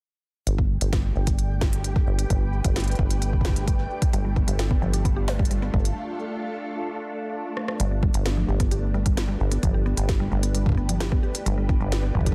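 An intricate, glitchy IDM fragment cut from a longer piece, built on an overdriven electronic kick and a woody-snared electronic kit with smooth hats and delay, a rubbery, saturated acid bass sitting up front on a G9 chord, and silky string-machine chords phased and chorused, while a flickering, grainy granular texture glimmers in the background until 6.0 seconds, a round, mallet-like FM pluck enters with echoing arpeggios at 4.1 seconds, and after a break and drum fill a filter sweep colours those arpeggios from 7.8 seconds on, all wrapped in digital ambience and a dense, heavily limited master.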